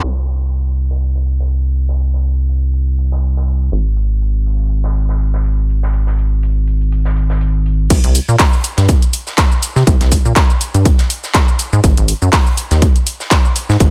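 A rubbery, hollow square-wave bass sits up front through this deep, hypnotic deep house excerpt, its resonant, wave-folded tone blending sine and triangle colors into a bouncy, mellow pluck with a fast attack and sustained body, pumping under sidechain compression. Behind it, an acoustic big-room rock kit supplies filtered hi-hat and a medium-tuned snare in the background, the hats also breathing with the sidechain, all in a 4/4 groove with a light sixteenth-note swing. A filter sweep carries the opening section, after a brief accent from the band at the start. At 7.9 s the drop arrives: a punchy, overdriven electronic kick pushes up front, and an overdriven, layered house kit returns with crash cymbal, handclaps, hi-hat and shaker, both re-recorded in a large room. The overall mix is dry and low-pass filtered.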